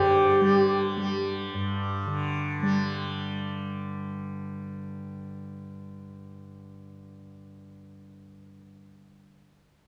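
Indian classical fragment, devotional and serene, at 164 BPM in 4/4. A close-miked bamboo bansuri sits up front with an airy, soft-attacked G4 and expressive vibrato, sounding only until 1.3 s, while the softly plucked tanpura drone on G2 to G3 buzzes and shimmers through to 9.2 s. A wet concert hall reverb with a 2.4-second tail surrounds both parts.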